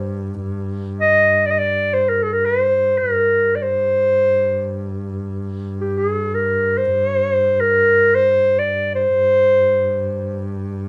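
Arabic maqam ensemble music in free time, this hypnotic, soulful excerpt in G maqam bayati sets a solo clarinet up front, its smooth-topped, classical-style tone carrying the melody between G4 and Eb5 until 10.4 seconds. Beneath it, a single bowed double bass holds a focused, close G2 drone with vibrato through 10.9 seconds, sitting well under the clarinet. A wet studio reverb with a short decay surrounds the pair.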